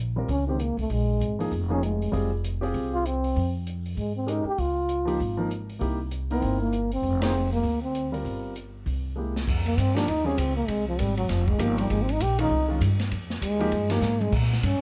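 Dark, lightly reverberant production gives this swinging, late-night small-group jazz cut an intimate, after-hours glow. An up-front trombone carries the melody with vibrato, a soft attack and scooped notes, over a woody, growly pizzicato upright bass, an intimate grand piano with audible action noise, and an acoustic drum kit with dark cymbals and a boomy kick in a small room. The band hits an accent at 7.2 seconds, and a drum fill at 9.2 seconds leads into a trombone solo from 9.5 seconds.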